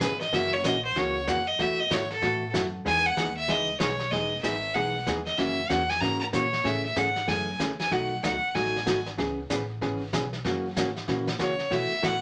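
A clear, intense bowed fiddle leads this playful western swing excerpt in E major, singing up front with light vibrato and a smooth top as it takes a solo through the opening 4.1 seconds. The tune swings at 190 BPM in 4/4, and the fiddle carries the melody until 9.1 seconds, then returns briefly at 11.4 seconds. Beside it, an up-front electric hollow-body jazz guitar picks a dark, clean, compressed accompaniment through changes such as F#7, B7sus4, Emaj9, Amaj7, B13 and C#m7. Underneath, a pizzicato upright bass with steel strings adds a woody bottom end, and a vintage kit played with brushes, heard mid-forward in a small room, offers a fat snare, a punchy kick and hi-hat with a rolled-off top. A moderate studio ambience wraps the group in a short room.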